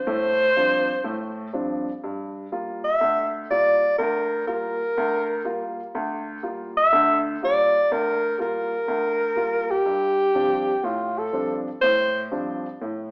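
A dark alto saxophone sits up front and carries the melody in a solo jazz style, with vibrato, scooped notes and a smooth top, in a cool, spiritual swing taken from a longer piece. An upright piano with a woody, natural tone and long sustain accompanies beneath it, moving between Dm7/G and Gm7 and ringing on alone after the saxophone stops at 12.3 seconds. The sound has the moderate reverb of a recital hall in a church or concert hall, heard through a thin AM-radio filter.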